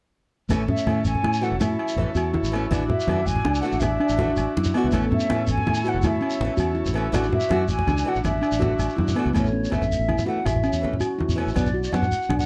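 Joyful and danceable, this highlife guitar band excerpt moves at 108 BPM in a straight 12/8 in A major, with a boxy picked archtop guitar playing accompaniment over a round, foam-muted fingered electric bass, while a buzzy vintage combo organ holds chords until 9.3 seconds. A nitrided-steel handpan spins soft, meditative arpeggios through tape echo, and an airy, distant concert flute enters at 0.7 seconds with an expressive, tongued melody touched by vibrato. Thick-skinned, low-tuned congas, a grainy, saturated shekere and ringing agogo bells set far back drive the groove, all sitting in light reverb as the chords shift from A to Dadd9/A and close on Bm.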